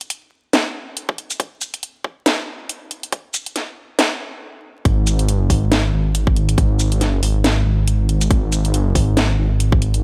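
Brooding and meditative, this deep dubstep fragment at 139 BPM rides a swung, half-time feel, with a tape-warm garage kit of hi-hat, shaker and cracking snare opening the build-up, a tight, up-front electronic kick joining at 1.1 seconds, a brief stop at 4.4 seconds, and a dark detuned saw bass dropping in at 4.9 seconds with a deep, rumbling, beating tone around G#1, all set in a dry mix dusted with vinyl crackle.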